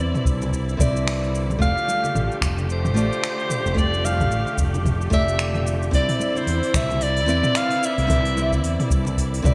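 This short excerpt from a longer sunset chillout piece has a bright 1980s-style digital sheen, set in a moderate plate reverb that gives it a polished studio gloss. At 111 BPM in 4/4 with a gentle swing on the sixteenths, the mood is smooth and relaxed, resting on Cmaj9 and F69 chords in C major. A warm soprano saxophone carries the melody up front with vibrato and a smooth top, its lines touched by digital delay, while a fingerpicked nylon-string guitar with fresh strings adds filtered, delayed accompaniment. A lush, bowed string section holds sustained chords underneath, and a growly fretless electric bass with tube saturation anchors the low end. The drums arrive almost at once: a deep house kit of finger snaps, smooth hi-hat, shaker and toms in gated reverb, joined at 0.3 s by an overdriven electronic kick and very quiet, band-limited congas.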